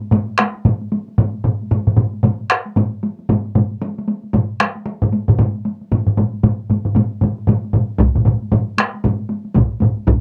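Ceremonial and driving, this short cut from a longer Japanese traditional piece is built entirely from taiko drums in 4/4 with a swung sixteenth-note feel, captured as a dry, close 1970s-style studio recording with light reverb. A solo taiko part struck with heavy sticks sits up front, its sound compressed and saturated, alongside a hard-stick taiko ensemble heard in a small room, while a second ensemble with heavy sticks plays in the background. At 8.0 seconds another hard-stick taiko ensemble joins, close and dry at the front of the mix, thickening the pounding to the end.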